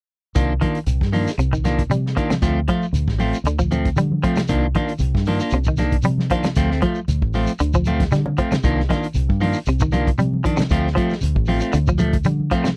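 A straight 4/4 afrobeat groove at 116 BPM in C dorian drives this hypnotic excerpt, where a muffled, lo-fi vintage drum kit with a punchy kick and a drum fill at 7.9 seconds sits under a round, foam-muted dub bass up front, damped congas and a grainy shekere, while a twangy, slightly broken-up electric guitar with vibrato plays stabs and a clean, chorused guitar picks arpeggios over alternating Cm11 and Dm7 chords in a dry, close 1970s-style studio sound.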